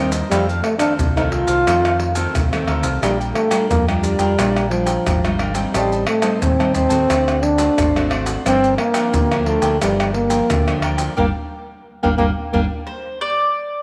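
Yearning and nostalgic, this fragment of a samba and choro piece in G minor moves at a steady 88 BPM, with a dark, breathy trombone carrying the melody up front in an intimate, whispered jazz style full of vibrato and scooped notes. Underneath, a crisp picked cavaquinho and a full-bodied fingerpicked nylon-string guitar trace chords from F7 through Am7b5 and D7 to Gm7, while an overdriven, round electric bass and a vintage, band-limited percussion section of maracas, pandeiro, tight surdo and tamborim played with hard hands drive the groove. A band accent arrives at 11.2 seconds, and a picked mandolin with double strings steps forward briefly at 12.9 seconds, all set in a small room with moderate echo chamber reverb.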